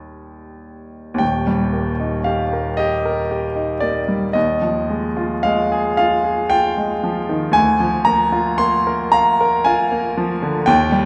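A bright grand piano carries this brief, mournful cut from a longer romantic nocturne, its brilliant, intimate tone showing audible action noise and long sustain as it moves through a rubato 12/8 lilt. The piano sits up front and present, while a wet recital-hall reverb of 1.6 seconds, heard from further back in the room, softens the top of the sound. The harmony shifts from Eb to Fm7/Eb at 4.4 seconds and settles on Bb7/D at 7.6 seconds, lending the melancholic passage a sense of unresolved longing before it breaks off at 11.1 seconds.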